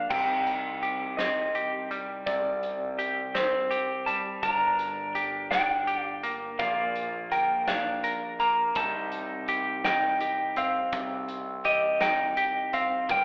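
A slow 6/8 sway at 55 BPM carries this brooding, melancholic post-rock fragment in C minor, where an electric guitar through a small old amp picks the melody up front with a slightly broken-up, lo-fi edge over clean, hollow-body arpeggios from a semi-hollow guitar treated with harmonic tremolo, twangy pedal steel chords with slide and volume swells tucked in the background, a growling overdriven fingered bass, and a dark, smooth big rock kit entering at 0.1 s with punchy kick, snare, hi-hat and crash, the whole mix set in a wet recital hall reverb and narrowed to a telephone-like tone as the harmony moves from Cm through Gm and Bb back to Cm.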